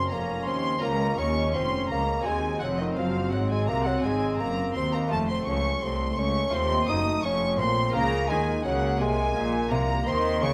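A straight 4/4 pulse at 84 BPM drives this stormy Bb minor passage from a baroque-style concerto movement, where a mellow solo bassoon carries the melody alongside two period-style violin sections, one rich with a smooth top on the melody and one close and warm on a second line. A dark, nasal viola section and a very quiet, bright, fingerpicked lute fill the accompaniment, while gut-string cello and double bass sections ground the bass through a progression from Bbm and Cdim to F and F7 before returning to Bbm at 7.9 seconds. A moderate recital hall reverb gives the reedy, lightly vibrato-touched strings a natural chamber space throughout this 10.5-second cut from a longer piece.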